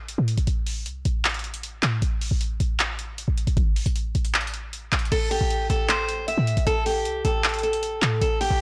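A short, punchy 808-style bass opens this menacing trap cut, its sine tone carrying a noise layer with a fast attack that decays tightly, sitting up front from the first moment. An electronic trap drum kit joins almost at once with a knocking kick, metallic hi-hats, handclaps and crash cymbal, moving in a brooding half-time feel. The first 5.1 seconds play as a break built from just bass and drums. At 5.1 seconds a picked steel-string acoustic guitar enters with a dark, concert-style melody in its upper register, placed up front beside the low end. The recording itself is blown-out and overdriven, wrapped in digital ambience that gives the short fragment a gritty, oppressive edge.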